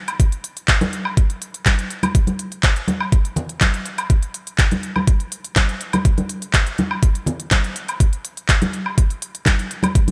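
House groove with a bittersweet, dreamy mood, cut from a longer piece and built entirely on percussion in a straight 4/4. A pop drum kit of handclaps and crisp hi-hats opens at 0.1 seconds, and a knocking, layered electronic kick joins up front from 0.2 seconds. Woodblock and congas, played with soft hands in a small-room acoustic sound, carry a sidechain pumping effect, and light reverb gives the mix a little air.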